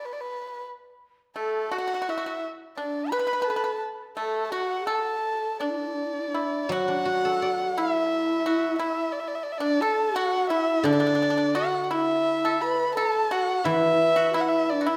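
Moving freely in a rubato 2/4 at 86 BPM in A zhi mode, this pastoral yet festive passage of Chinese traditional chamber music, cut from a longer piece, opens at 0.0 s with a dark, intimate solo erhu carrying the melody up front, its airy bow, vibrato and sliding portamento close and soft in attack. At 1.4 s a mellow, bamboo-toned low xiao with rolled-off highs and a dry, percussive fingerpicked pipa join as second lines. From 6.7 s a silvery, ringing guzheng adds accompaniment, all set in the wet bloom of a scoring-stage reverb.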